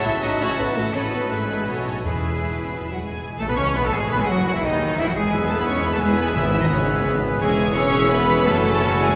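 A close, focused violin section carries the melody in this urgent, restless classical fragment, its bowed vibrato lush and clear over a rubato lilt in three. An oboe with punchy, roomy tone, a second violin section set in the background, and a pure-toned flute weave second lines around it, while a very quiet viola section fills in the accompaniment and a ringing, fingerpicked harp spins arpeggios beneath. Cellos with soft attacks and expressive portamento join rich double basses on the bass line, and a dark, distant horn section holds sustained chords. At 3.4 seconds the brass grows fuller as trombones add sustained chords, a dark trumpet section punctuates with stabs and a very quiet tuba reinforces the bass. Brief timpani strokes from hard mallets mark the music at 2.0 and 6.4 seconds, and the whole ensemble sits in a long, wet cathedral reverb that gives the sound the breadth of a church or concert hall.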